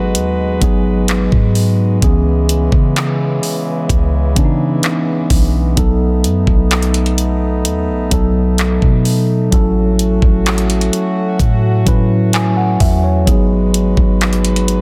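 Dense and heavily limited with a light reverb, this late-night, longing contemporary R&B excerpt in C# minor moves at a slow 64 BPM as a mellow tine electric piano sits up front over tight, classical-style French horn chords, a deep, round 808-style bass with a dark, decaying tone, and an electronic drum kit whose knocking kick, metallic hi-hat and handclaps enter at 0.1 seconds, all drifting through G#m7, C#m7, B7 and A6.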